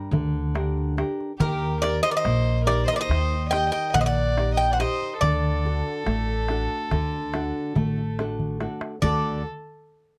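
Wistful and reflective, this excerpt of Greek folk music for a bouzouki band moves in a straight-feeling 9/8. A fingerpicked nylon-string classical guitar opens the recording, joined almost at once by a pizzicato upright bass with a woody tone, sitting up front, and a small, high clay-shell darbuka played with soft hands on natural skin. At 1.4 seconds the Greek bouzouki takes the melody, its picked double strings metallic and partly octave-doubled, placed up front, while a single bowed violin adds a floating second line, played sul tasto with a soft attack and a pure, smooth top. The harmony moves from Gm to Eb and then to D, and a drum fill at 8.4 seconds leads into a new section. Close, detailed microphones and light reverb keep each part clear and intimate.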